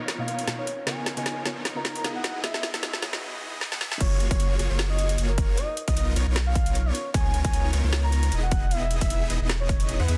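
Future bass in a playful, bright mood with a swung, half-time feel, cut from a longer piece. It opens on a build-up in which huge, lush, detuned supersaw chords and a full, mellow octave-layered synth lead both sit under filter sweeps, while a trap kit with a woody snare and metallic hats plays fills, a very quiet riser hovers, and a soft, round pluck with a dark, dub-echoed tone adds accompaniment until 3.2 seconds. At 4.0 seconds the drop arrives: a punchy, overdriven electronic kick and a deep, thick saturated sub bass push up front, and an airy, dreamy lead with portamento and a cassette-tape tint spins arpeggios in the background. The supersaw chords, both leads, the pluck and the sub bass all pump with the sidechain, and the lead melody carries chorus and tape echo, while the snare gets soft clipping. Lavish extended chords cycle through the passage over a dense, heavily limited modern master with digital ambience.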